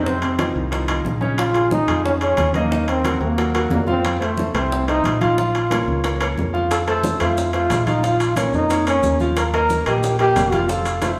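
A warm, punchy trombone takes the solo melody up front over a clear, intimate baby grand piano with audible action noise and a dark, round fingered electric bass, as low-tuned bongos, thick-skinned congas and ringing, saturated metal-shell timbales drive this fiery, danceable Bb minor salsa at 180 BPM, with grainy, vintage maracas joining in the background at 6.7 s, all captured as a band playing live in one room with a large studio reverb.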